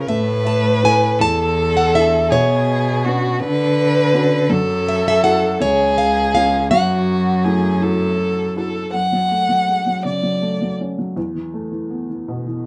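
A picked, plugged-in old ladder-braced acoustic guitar carries the melody up front, its woody, boxy tone and old strings lending an aged character to this melancholic, intimate folk-pop ballad in F# minor, moving slowly at 54 BPM in a straight 6/8. A nasal, smooth violin with vibrato plays a second line, a sul tasto cello with an airy bow and light vibrato holds the bass until 8.9 s, and a felt-muted upright piano, mellow with audible action noise, accompanies under moderate studio reverb. When the guitar and cello drop out, the violin takes a short solo from 8.9 s over the piano as the harmony settles on F#madd9 and then Esus4, in this excerpt cut from a longer piece.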